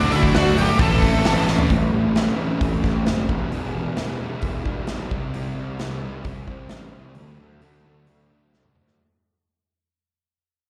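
Heard as a live gig through the venue's PA with a light recital-hall reverb, this brooding, angsty cut of quiet-loud alternative rock opens with a dark octave-fuzz lead guitar melody, carrying distortion, slapback echo and digital delay, over a very quiet, double-tracked overdriven guitar riff and a pair of background fuzz guitar riffs, one with slapback echo. A growly, up-front fuzz bass and a big-room acoustic drum kit with a punchy kick drive the riffs, and a drum fill at 1.5 seconds leads into the turn at 1.7 seconds. From there the piece fades out as a lo-fi, compressed guitar through a small old amp picks chorus-tinged arpeggios in the background, while the other fuzz guitar, bass and drums continue to a closing fill.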